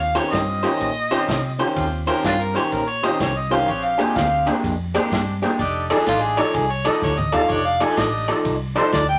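Electric blues shuffle at 125 BPM, gritty and laid-back, where an overdriven harmonica with tongue slaps and scooped notes takes an up-front solo over a slightly broken-up, lo-fi guitar riff, a fat tonewheel organ with key click and slow rotary speaker, a round foam-muted bass, mellow horn stabs in the background and an airy country drum kit that plays a fill at 7.0 seconds, all moving through Eb13, Bb13 and F13 in a short passage cut from a longer piece.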